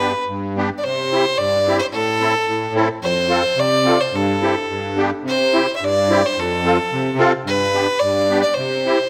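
A clear, earthy bowed fiddle carries the melody up front in this jolly, bouncy alpine folk dance-band fragment, cut from a longer piece at 108 BPM in 2/4 with a rubato feel in C major, while a reedy, shimmering musette-tuned accordion plays close-miked accompaniment in a moderate recital-hall reverb with a faint mains hum.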